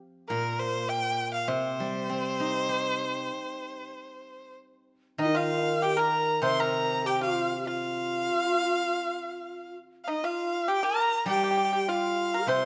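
A rubato 4/4 pulse around 100 BPM carries this graceful, tender excerpt of Chinese traditional chamber music in C yu mode, where an up-front bowed erhu sings a clear melody with vibrato and portamento over a silvery, ringing steel-string zither plucked with fingerpicks from 0.3 seconds, until at 5.2 seconds a pure, distant bamboo xiao with vibrato and a bright, percussive pipa join on a second line, all set in a moderate recital-hall reverb.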